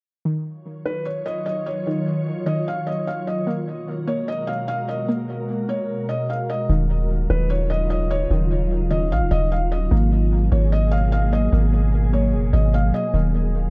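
A warbling, detuned sawtooth pluck opens this hazy, ethereal half-time hip hop excerpt at 149 BPM in Eb minor, its dusty arpeggios treated with chorus, low-pass filtering and tape echo. Almost at once a glassy FM pad joins with slow-attack chords softened by ensemble chorus and its own reverb, while a felt-muted upright piano carries a mellow, boxy melody with audible action noise and tape echo. At 6.7 s a deep, dark 808-style bass enters up front with long sine notes, anchoring the Ebm9 and Abm9 changes in a dry, echo-heavy mix.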